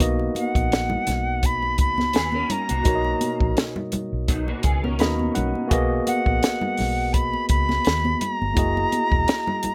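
Warm and lush, this short cut of 1970s-style soul sways at 84 BPM in B major, with a barky tine electric piano, a round, foam-muted fingered bass, a dry, punchy cocktail drum kit and ringing congas supporting a bright, reedy jazz flute that enters at 0.4 seconds, while a slightly broken-up, lo-fi electric guitar riff with chorus appears from 2.1 to 5.7 seconds and the electric piano adds a fill before the chords move from Bmaj7 to G#m9 and F#13 under light reverb.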